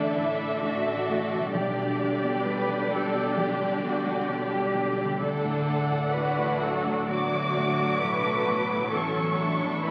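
A cinematic, emotional film score for orchestra, uplifting and hopeful at a slow, rubato pace, where a dark violin section carries the melody with vibrato and portamento over a lush second violin line, background violas, a warm piano accompaniment with deep bass, very quiet mellow harp arpeggios, a smooth cello section and close double basses, all bathed in a wet scoring-stage reverb and the crackle of a very old 78 rpm record in this short cut from a longer piece.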